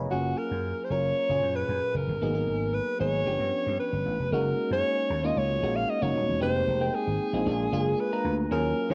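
Recorded at home on cassette with a moderate spring reverb, this breezy, glossy slice of polished 1980s jazz-funk pop in F# major moves at 114 BPM in a straight 4/4, where a glassy, bell-like FM electric piano with analog chorus and a punchy, amped slap bass carry the accompaniment beneath a breathy, intimate alto saxophone melody with vibrato that enters at 0.1 seconds, over rich chords such as F#maj7, G7#11 and Fm11.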